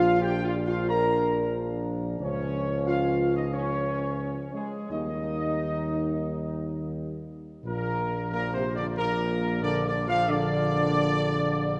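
A mellow, close-miked trumpet section with light vibrato and a soft attack carries a regal, majestic classical melody at 90 BPM from the first moment, over distant, roomy French horns and a background trombone section holding dark sustained chords, with an up-front, punchy tuba anchoring the bass, as the harmony moves from Bb through Db and Eb before returning to Bb at 7.7 seconds, all bathed in a wet church reverb in this brass passage cut from a longer piece.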